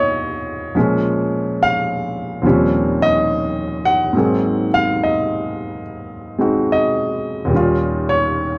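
A slow, loosely swung pulse around 71 BPM in 4/4 drifts with rubato, the eighth notes leaning into a gentle swing as the phrasing stretches and relaxes. This is a short cut from a longer piece of solo jazz, carried entirely by a baby grand piano that plays alone for the full 8.6 seconds. The piano's tone is warm and natural, with a short sustain and an up-front placement that keeps every voicing close, spanning from Eb2 up to Gb5. The harmony moves through rich extended chords, opening on Eb9, passing through Bbm7, Eb13 and Ab9, and settling back onto Eb9 at 7.5 seconds. A modest booth ambience adds just a touch of air around the instrument, and the tuning sits slightly high at A4 = 444 Hz, framing a warm, sophisticated mood.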